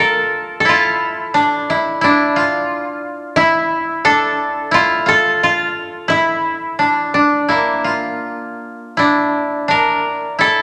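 Still and solitary, this short passage of Japanese traditional chamber music moves in a free, rubato 4/4 and is cut from a longer piece. Two kotos, both plucked with fingerpicks and set up front, play together across all 10.6 seconds: one carries the melody with a warm, woody tone, while the other adds a second line with a bright, dry edge. A reverberant recital hall surrounds the pair.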